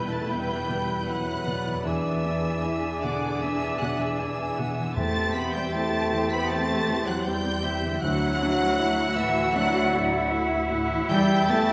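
A dark violin section carries the expressive, portamento-tinged melody of this bittersweet, moving cinematic passage in E minor at a rubato 78 BPM, with a hollow flute, a warm cor anglais, a smooth second violin section and a clear clarinet (entering at 0.3 s) adding second lines, a felt-muted upright piano and distant violas in accompaniment, mellow French horns sustaining chords, a very quiet ringing harp playing arpeggios, cellos and double basses on the bass, a round soft-mallet timpani note from 5.0 s, and a wet scoring-stage reverb.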